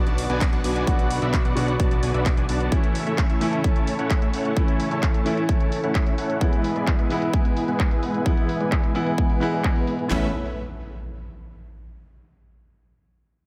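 Festival progressive house at 130 BPM in A major, this triumphant, uplifting passage is cut from a longer piece and moves through Bm, A and E before landing on Aadd9 at 10.1 seconds. A dense, compressed supersaw carries the riff, huge and detuned with a fast attack and a touch of vibrato, shaped by a filter sweep and delay through the first 10.1 seconds. Beneath it, an intimate concert grand piano plays accompaniment with audible action noise and short sustain, while a lush, airy unison pad holds chords in the background, coloured by chorus, phaser and vintage 12-bit sampler grit. A fat analog bass with a wave-folded, filter-swept tone drops out at 2.7 seconds and returns briefly at the close, and the piano, pad, supersaw and bass all pump against the sidechain. Two overdriven, layered drum kits drive the groove: one places a punchy kick and huge snare up front with handclaps, the other adds handclaps and hi-hats softened by low-pass filtering. 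An electronic impact rings out from 10.2 seconds, and a moderate plate reverb soaks the mix in a dreamy haze.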